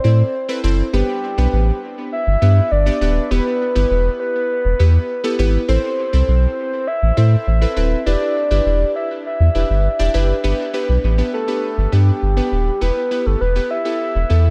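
A dry, echo-heavy mix carries this bittersweet, energetic dance-pop fragment at 101 BPM in E minor, tuned to A4 = 442 Hz, where a deep, round sub bass sits up front beneath glassy, airy digital keys treated with chorus, a filter sweep and dub echo, while a dark, full octave-layered synth lead carries the melody through chorus, phaser and dub echo over chords moving from Am through G, Em and Em7, with all three parts playing from 0.0 to 14.5 s.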